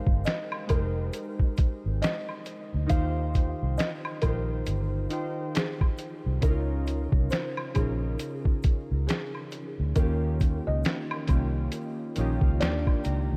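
A relaxed 68 BPM groove in 4/4 swings its sixteenths at 60%, carried by a compressed, pitched-down sampler-style drum kit whose thumpy kick, medium-tuned snare, hi-hat and finger snaps sit up front with a tape-warm, muffled character. This short lo-fi hip hop excerpt in Eb mixolydian, tuned to A4 = 437 Hz, has a cosy, mellow mood, with an egg shaker, woodblock and group handclap adding faint acoustic, small-room percussion beneath the kit. A vintage fingered electric bass, foam-muted, dark and round yet punchy, anchors the low end close to the listener. Warbling synth keys built from detuned pulse and sawtooth waves, with a noise layer, filter sweep and chorus, supply nostalgic, airy chords through Abmaj9, Eb69, Db69 and Eb9, closing on Ebmaj9, and play a fill from 11.7 s. Over this, a felt-muted upright piano carries the melody from the start with a soft, intimate tone, its short sustain and audible action noise softened further by a low-pass filter and analog delay. 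Light reverb and a digital ambience wrap the whole mix through to 13.4 s.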